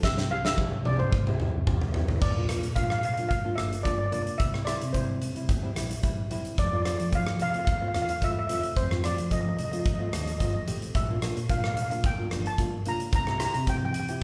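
A straight, bouncy 4/4 groove carries this carefree calypso excerpt from a longer piece, whose first 2.2 seconds bring a steel pan solo and a drum fill from a huge, punchy arena kit with bright cymbals. The shimmering double-second steel pan, struck with hard rubber sticks, leads up front, while a woody nylon-string guitar fingerpicks full-bodied chords on old strings and a round, hollow-body electric bass sits in the background. Very quiet, distant congas played with soft hands enter at 0.5 seconds, and the whole band plays live in one room with a moderate large studio reverb.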